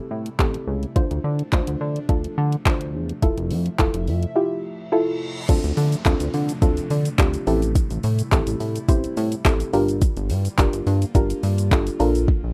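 A glossy, retro chorused synth bass sits up front with a smooth R&B drum kit of soft kick, warm hi-hats, handclaps, shaker and crash cymbal in this confident, bittersweet dance-pop passage at 106 BPM in straight 4/4, cut from a longer piece. A soft, round pluck and an airy, breathy pad in the background carry chords from Am7 through Dm7 and Fmaj7, all three synths pumping with sidechain, while the pad adds a phaser. A reverse cymbal from 4.8 seconds leads into a second section moving through Gm7 to Bbmaj7, with a break at 12.3 seconds, all in a light-reverb, rough home-demo mix.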